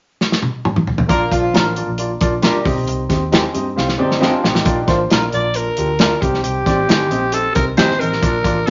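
Uptempo 1960s-style soul in Bb major at 135 BPM, joyful and uplifting, this excerpt opens with a drum fill on a tight, up-front kit before a distant, punchy horn section, mellow woody upright piano and round, foam-muted electric bass come in at 1.1 seconds, with a slightly broken-up guitar adding background stabs through spring reverb. A second guitar plays a brief picked riff around 4.0 seconds during another drum fill, and a bright, gritty alto saxophone takes the melody up front from 5.3 seconds over the changes between Bb and Cm. The mix sits in a wet studio reverb with a rolled-off top end.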